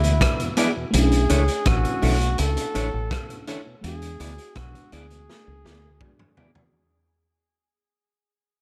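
This lovers rock reggae clip, cut from a longer piece, opens already fading out, carrying a longing, bittersweet mood. A breathy, close-miked flugelhorn sings the melody in a mellow jazz style with light vibrato and tape echo. Behind it sit a lush, dreamy FM electric piano with a soft pad layer and chorus, and a lightly overdriven tonewheel organ with audible key click. Up front, a deep dub fingered electric bass sounds dark and round, while a crunchy breakbeat drum kit adds a punchy kick, medium-tuned snare, rim clicks, hi-hat and toms with a saturated, rolled-off grit. A clean, picked semi-hollow guitar enters with hollow-body stabs at 0.6 seconds as the harmony moves from E7 to Bm11 and back to E7. A drum fill arrives at 5.3 seconds and an electric piano fill at 5.6 seconds, all within light reverb and a small room ambience.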